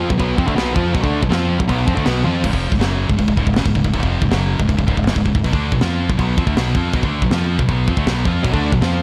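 Two picked electric guitars open this aggressive, relentless heavy metal excerpt together, one scooped and high-gain with bright distortion, the other overdriven, which drops out at 2.4 seconds and returns only at 8.4 seconds. Underneath, a growling fingered bass with its own overdrive holds the low end, while a tight, mid-forward drum kit with a medium-tuned snare, crash cymbal and toms plays up front and throws in a fill at 2.2 seconds. The chords move from B5 to C# and back to B5 in a dark, small-room production.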